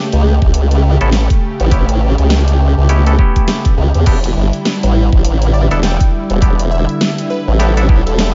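A saturated, formant-swept wobble bass sits up front in this swaggering, funky glitch hop excerpt, joined by a knocking electronic kick, a dubstep kit with a huge snare, a smooth sawtooth pad pumping under sidechain, stringy clav stabs through a combo amp from 1.0 s, and a catchy plucky unison lead with vibrato and analog delay arriving in the background at 5.5 s, over vinyl crackle and light reverb.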